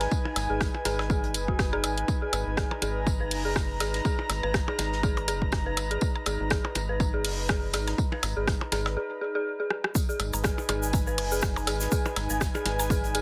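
A short cut from a longer minimal techno track in G# minor at 122 BPM with a lightly swung 4/4 feel: a rubbery, nasal square bass pumps under an airy, breathy pad, while a bright, overdriven house kit of hats and rim clicks sits up front beside a small-room acoustic soul kit with rolled-off hats, snare and tambourine. A punchy overdriven electronic kick arrives almost at once, and an eerie, inharmonic FM bell riff with chorus, 12-bit sampler grit and dub echo joins tape-toned percussion blips to give a clinical, quirky mood. After a break with a drum fill at 9.7 seconds, the drop lands at 10.0 seconds as a grainy egg shaker enters, all in a light reverb.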